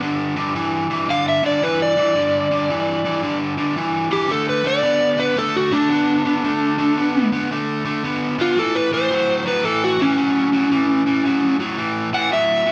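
A laid-back 4/4 blues at 112 BPM swings its eighths, with a biting, bright overdriven electric guitar picking a low riff up front from the very start, moving through G5, D5 and A in D major. At 1.1 seconds an overdriven slide guitar enters with a warm, fingered melody that sits slightly louder and higher, giving the gritty cut its singing voice. The band plays live in one room, wrapped in a moderate large-studio reverb, and the piece breaks off at 12.7 seconds as part of a longer performance.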